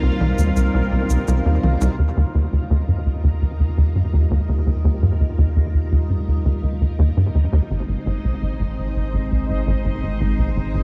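Mysterious and expansive, this sequencer-driven space music is a short passage cut from a longer piece, set in a steady, straight 4/4. A tight, punchy sequencer bass drives the whole passage up front with a plucky sawtooth-and-square riff, coloured by lush chorus and analog delay, while a round, deep sine sub bass sits very quietly beneath it. Above them, a vintage string machine holds mellow, full-bodied chords with ensemble chorus, and a resonant, bubbling texture steps through random filter changes with chorus and its own reverb. Electronic toms and cabasa with analog delay appear only from 0.2 to 2.0 s. At 2.0 s the harmony moves from Cm to Ebadd9, the string machine and texture fade in, and a filter sweep works on the synth bass through to the end, with the chord shifting to Ab at 7.7 s, all within a dark production with light reverb.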